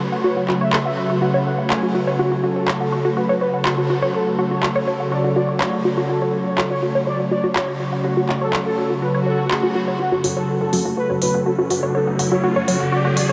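Hypnotic and dramatic, this melodic techno excerpt in F# minor at 123 BPM opens on a smooth, up-front analog pad with chorus holding sustained chords beside lush, detuned unison pluck arpeggios through analog delay, adds a bold, brassy synth melody at 0.2 s and a tape-warm electronic drum kit of handclaps and smooth hats at 0.5 s, then brings in a swell at 9.2 s before a build-up with a riser and a filter sweep on the pluck from 10.0 s, joined by a punchy, funky bass in the background from 10.1 s, all set in a dreamy mix soaked in huge ambient reverb.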